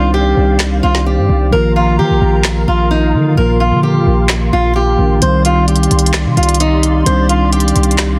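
A half-time trap groove at 130 BPM in 4/4 sets a menacing, hard-hitting tone in C minor, with the electronic trap kit arriving at 0.6 seconds to bring a woody snare, crisp hi-hats and handclaps. Underneath, a punchy, heavy 808-style bass sits up front, its sine tone carrying a noise layer with a fast attack and a decaying tail. The melody comes from a fingerpicked acoustic guitar with a boxy, swing-style feel, also placed up front, while a mellow, clean electric piano plays direct accompaniment below it. A hollow, flute-like pad holds soft, nasal sustained chords with a slow attack, its detuned tone thickened by ensemble chorus. The harmony moves from Cmadd9 to Bbsus4 at 1.5 seconds and returns to Cmadd9 at 5.2 seconds, all set in light digital ambience within a dense, heavily limited modern master cut from a longer piece.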